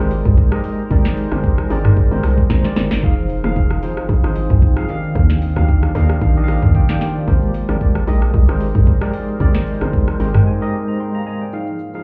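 A worn, slightly out-of-tune tine electric piano and a hollow, bouncy log drum bass open this hypnotic, late-night amapiano cut at 113 BPM, with a gentle swing on the sixteenths. The log drum sits up front with a fast attack and a decaying, percussive FM tone edged by a noise layer, while the clean electric piano, heard as if through built-in speakers, comps over chords moving from Abmaj9 to Fm7, Ebmaj9 and back, adding short fills along the way. An electronic afro-pop kit arrives almost at once, also up front, with a deep kick, sharp snare, metallic hi-hats, rim clicks, shaker and toms, including a brief drum fill around 2.5 seconds. Behind them sits a deep, moody sawtooth pad with detuned unison, a sine sub octave, chorus and reverb, swelling in slowly and pumping gently in the background, while very quiet, bright, low-tuned acoustic congas add close detail. The whole mix sounds muffled, as though heard through a wall of a club with its reverb hanging in the air, and a break arrives at 10.5 seconds, shortly after the log drum falls silent at 10.4 seconds.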